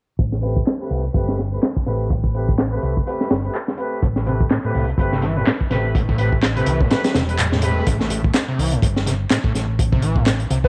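A murky, low-passed home cassette recording with light small-room reverb frames this swaggering, gritty breakbeat fragment at 125 BPM in A minor, swung on the sixteenths. A crunchy, saturated drum kit with a punchy kick and high-tuned snare runs with layered electronic handclaps and a round, amped fingered bass under a filter sweep, while a smooth brass ensemble plays stabs over Am9. A squelchy, distorted acid line snarls in the background from 4.0 s, and a very quiet riser sits under a brief dropout of the kick before the harmony moves to Am7 at 7.9 s and a breathy, flute-like synth lead touches a single C5 at 10.6 s.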